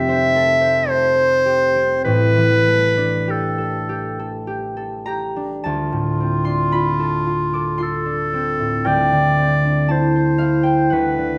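A bright solo clarinet carries the melody up front in this mysterious, hazy impressionist classical duo in D dorian, moving in a rubato 3/4 at 48-59 BPM, while a fingerpicked, ringing concert harp supplies the accompaniment beside it over Fmaj9, A7sus4, Dm7 and Cadd9/D chords, all set in a wet recital hall reverb in this brief excerpt cut from a longer piece.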